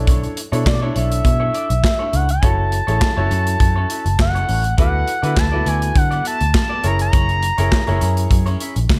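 A smooth, sawtooth synth lead carries the melody from 0.7 seconds, its sustained, mellow tone colored by chorus and vibrato in this slick, funky slice of early-eighties boogie funk in straight 4/4. Beneath it, a dark, round, foam-muted picked electric bass sits up front alongside a polished studio drum kit, whose tight kick, medium-tuned snare, hi-hat and handclaps are wrapped in gated reverb. A clear grand piano fills in the accompaniment in its middle register, while a twangy, scooped clean electric guitar plays a riff in the background with subtle chorus. The harmony moves through Bm11, F#m7, D6 and F#7, and the dry sound keeps the mix crisp. This short passage is cut from a longer piece.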